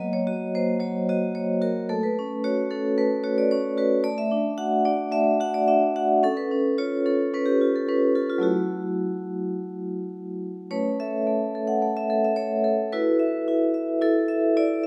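A moderate recital-hall reverb surrounds a bright, up-front solo vibraphone in this short cut from a longer contemporary classical piece, its metallic, ringing tone shaded by a slow motor vibrato. Struck with medium hard mallets across a range from F#3 to F#5, the reflective, flowing music moves in a straight 4/4 through colourful chords such as Dadd9/A, C#aug7 and F#m7. At 10.7 seconds it settles into a new tonal centre, passing through Aadd9 and E11 before the clip ends at 14.9 seconds.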